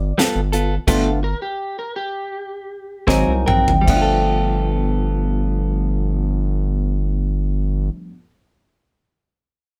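A clean, direct-recorded electric guitar leads this laid-back, soulful straight-eighth soul blues excerpt in G mixolydian, taking a solo over the first 3.9 seconds while the tempo slows within the 74-89 BPM range. Beside it, an electric guitar through a small old amp plays a slightly broken-up second line, and a round, deep analog bass with a fast attack and sustained, mellow tone anchors the low end from the start. A tight funk drum kit with a high-tuned snare and tight kick comes in at 0.2 seconds, and the band hits a stop from 0.9 to 3.1 seconds before a drum fill carries the harmony from G9 to Ab9 and back to G9 at 3.9 seconds; the drums drop out shortly after, at 4.1 seconds. A barky tine electric piano with a phaser sits in the background as accompaniment. The band plays live in one room with light reverb.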